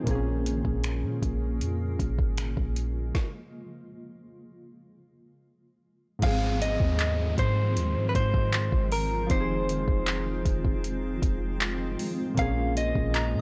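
A smooth, romantic contemporary R&B excerpt opens with round, detuned analog keys over a blurred granular pad that pumps under its own reverb, joined by a boomy sine 808 bass and a soft, up-front drum kit with woody snare, metallic hats, snaps and claps, all halting at 3.1 seconds before resuming at 6.2 seconds, when a compressed, direct-recorded clean electric guitar takes the melody over a background downlifter, and a pure FM bell with phaser glints in at 13.1 seconds, the whole mix dry and gritty with transformer saturation.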